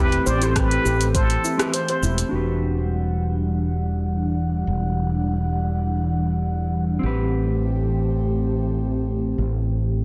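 Dense and heavily limited with a moderate hall reverb, this smooth sunset chillout excerpt at 102 BPM opens with a plunger-muted jazz trumpet offering bright, scooped wah-wah notes over shimmering steel pan arpeggios, soon joined by a tape-warm deep house kit of cabasa, hi-hat and rim click and then a deep electronic kick, all of which fall away by 2.3 s, when a filter sweep begins on the dark, clean, fingered electric guitar and the breathy, detuned pad with chorus while a round fretless bass anchors the Am7 and Em9 harmony.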